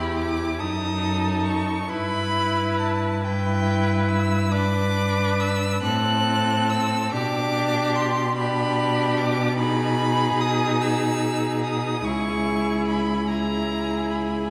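This is a slow, romantic classical movement for string quartet, melancholic and yearning, moving in a rubato 6/8 at roughly 44-50 BPM counted in dotted quarters, tuned to A4 = 441 Hz. The first violin carries the melody high in its range, from G5 up to F#6, with a rich, focused vibrato tone. Beneath it the second violin holds a smooth, even second line between G4 and B4, and the viola adds clear, focused accompaniment from C4 to E4. The cello sits up front as the bass, a rich, bowed voice reaching down to C#2. The harmony opens in E minor, settles toward G major around 4.5 seconds, and reaches darker chords such as G#m/B and A#m7b5/C#, with all four players sounding throughout this 14.5-second excerpt from a longer piece. A scoring-stage reverb with a 2.0-second tail surrounds the ensemble with a spacious, wet bloom.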